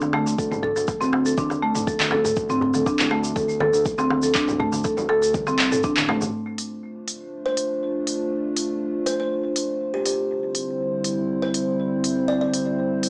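A woody, up-front marimba plays arpeggios with sidechain pumping, a low-pass filter and analog delay in the opening section of this spiritual afro house excerpt, over a saturated, mellow synth bass, soft-handed congas, a clay-shell darbuka, a grainy tube shaker, a deep electronic kick and a layered deep house kit with handclaps, smooth hi-hat and toms, before a moody, detuned analog pad with chorus arrives at 6.9 s and a ringing kalimba melody enters at 7.5 s, heard through a home cassette recording with a small-speaker sound and a short, wet studio reverb.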